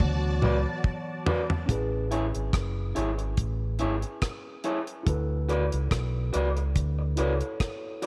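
A slow, lightly swung 71 BPM lovers rock reggae groove in A major opens with a drum fill on a deep, dry kit with a tight kick, hi-hat, rim click and toms, under a round, punchy, dark fingered dub bass that sits up front. A swirling, bright string machine with ensemble chorus and phaser colours only the opening 1.6 seconds. Slightly broken-up picked guitar stabs enter at 0.4 seconds over a mellow, clean tine electric piano with slapback echo that plays from the very start, the harmony moving from D6 to Amaj7 in a sweet, romantic cut from a longer piece, all set in light studio reverb.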